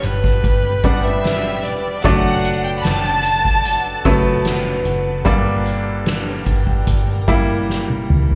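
A clear, jazz-style alto saxophone with vibrato and scooped notes opens this heartfelt, tender pop ballad, heard live through a club PA over woody upright piano, a dark, round muted electric bass, soft-mallet drums with a boomy kick, and an ethereal pad in the background. The saxophone stops at 1.7 s, while a lush, bowed violin section carries a second line from 0.8 to 4.4 s as the harmony moves from G to D/F# and then Gm. A drum fill closes the passage at 7.7 s.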